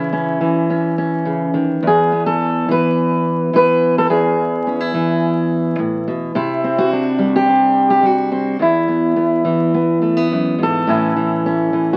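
A fingerpicked steel-string acoustic guitar plays alone, up front and warm, carrying this gentle, pastoral folk excerpt in E major at 106 BPM in a straight 4/4, ranging from E2 to B4 and moving through C#m, E and Csus2 before arriving on A at 10.9 seconds. A moderate club reverb surrounds the guitar's auditorium tone, while the sound of a very old 78 rpm record, complete with vinyl crackle, lends the twelve seconds a worn, antique character.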